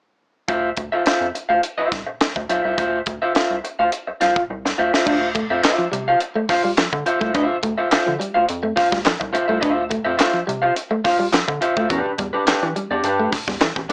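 A twangy, slightly broken-up electric guitar through a small old amp sits up front in this sly funk excerpt at 105 BPM in D dorian, playing fingered Dm9 accompaniment over a rubbery, hollow square-wave bass and a polished fusion kit with a high-tuned snare and punchy kick. After a drum fill, a second picked guitar at the edge of break-up brings in a riff at 5.1 seconds, and saturated group handclaps join from the background at 5.6 seconds before the harmony moves to Em7. The recording has a small-speaker sound in a moderate studio reverb.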